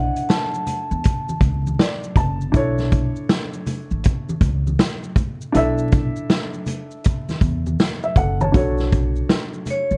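This cool, nocturnal jazz-hop cut opens with a metallic, ringing vibraphone melody struck with medium hard mallets over a dark, mellow upright piano and a woody, thumpy pizzicato upright bass, all resting on a Bm11 chord in B minor. Moments later a vintage drum kit arrives up front with a punchy kick, a medium-tuned snare and hi-hat, carrying a rolled-off top and gritty 12-bit sampler texture at a relaxed 80 BPM with a swung 16th-note feel. Soft-handed maracas and congas sit close and dry in the background. When the vibraphone drops out at 1.4 seconds, the intimate piano, with its audible action noise, short sustain and plate reverb, steps forward with a brief fill. At 8.5 seconds the harmony shifts to Bm9 for a new section, and the vibraphone, colored by analog delay, returns at 9.7 seconds as this clip from a longer piece closes under a dark production with vinyl crackle and light reverb.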